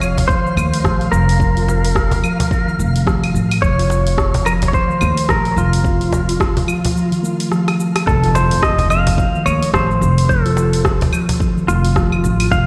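A twangy, up-front clean lap steel guitar carries the slide melody with tape echo over a hypnotic organic downtempo groove at 108 BPM in F major, swung on the 16ths, while a round, meditative steel tongue drum plays arpeggios through digital delay and a thumpy pizzicato upright bass pumps beneath. A deep electronic kick and a deep house kit of claves, dark hi-hat, rim click and shaker keep time in studio reverb alongside a woody, hard-handed cajon heard close and dry, as a twinkling granular texture shimmers in the background until 8.1 seconds. A drum fill from 7.5 seconds leads the harmony from Bb5/F to F, marked by a very quiet electronic impact, all heard in a bare stone room on a big sound system.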